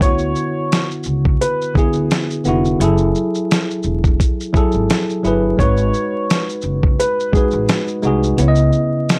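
A dusty, sampler-style soul drum kit sits up front in this nostalgic, hazy lo-fi hip hop fragment, its compressed, gritty sound built on a thumpy kick, a fat snare, hi-hat and shaker with a light swing on the sixteenths. Beneath it, a pizzicato upright bass gives a woody, acoustic low end. A worn tine electric piano, slightly out of tune and heard through its built-in speakers, carries the accompaniment under a low-pass filter. An intimate upright piano plays the melody, also filtered, with its natural action noise audible. The piano drops out at 7.8 seconds and the bass at 8.7 seconds, while the drums and electric piano carry on until the cut at 9.2 seconds. The dry, hardware-recorded sound is coated in vinyl crackle as the harmony moves from D6/9 through F#m9 and G#m7 to C#m9.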